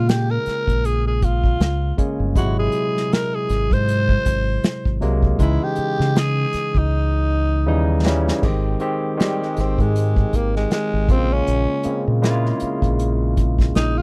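R&B with a neo-soul lean, this smooth, warm excerpt from a longer piece moves with a swung sixteenth-note feel in four. A raspy, growling tenor saxophone carries the melody in a jazz style, gritty in tone but with a smooth top. Beneath it, a barky, bright tine electric piano, lightly overdriven through a combo amp, supplies the chords while a deep, round fingered electric bass anchors the low end with a punchy, dub-weighted presence. An acoustic drum kit played with bundle sticks adds an airy small-room sound, with a medium-tuned snare, punchy kick, hi-hat, crash and dusky cymbals; its fill from 6.9 seconds leads into a tenor saxophone solo at 8.4 seconds as the harmony settles from Eb7b9 onto Abmaj7. The dry, close recording keeps every instrument up front with a 1970s studio character and very little reverb.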